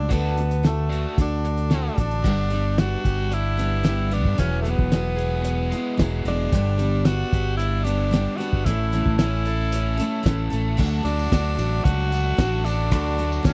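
A raspy, forceful tenor saxophone with vibrato and tape echo carries the melody over a jangly, nostalgic folk rock and heartland rock groove at 112 BPM in D major, backed by bright picked steel-string acoustic guitar, a double-tracked overdriven electric guitar riff, a punchy, up-front fingered electric bass and a thuddy cloth-damped drum kit with dark cymbals and a fat snare, while a jingly tambourine joins in the background at 10.8 s, in a dry, close 1970s-style studio recording.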